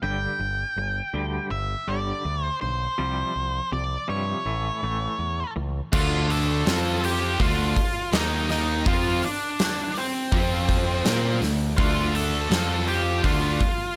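Quiet-loud alternative rock in 4/4 at 82 BPM, this short cut from a longer piece feels cathartic and angsty. It opens with a dark, fuzzy octave lead guitar carrying the melody up front with slapback echo, over a twangy clean guitar playing tremolo-laden arpeggios and a growling, overdriven picked bass, moving through G5, Csus4 and A. At 5.9 s the music settles into D minor and erupts: a huge arena drum kit crashes in with a punchy kick, medium-tuned snare, hi-hat and crash cymbal in a big, natural-sounding room. Three picked rhythm guitars join on the riff, a bright tight distorted one and a compressed overdriven one sitting in the background, plus a very quiet double-tracked high-gain part. The chords circle between Dm, F5 and Eb5, the lead guitar continuing above until about 13.9 s, all wrapped in studio reverb.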